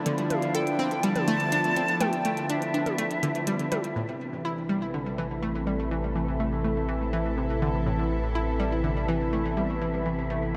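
Ambient, sequencer-driven space music in A minor at 123 BPM, this expansive, hypnotic passage is cut from a longer piece and sits in a huge, wet reverberant space. A lush, thick unison pad holds sustained chords up front with chorus, moving from Dm9 to Am at 4.0 seconds, while a breathy, wind-like tuned noise texture drifts in the background with its own built-in reverb. An analog pluck with a fast attack, short decay and ring-modulated edge plays a riff through chorus and delay for the whole length. In the opening section, a distant silver concert flute with vibrato carries an airy melody high above, and a minimal electronic kit of clicky hi-hats and toms adds delayed, tape-warm percussion until about 3.9 seconds. From 4.0 seconds a deep, wave-folded analog bass anchors the low end on A, its sound evolving and mellow with tube saturation.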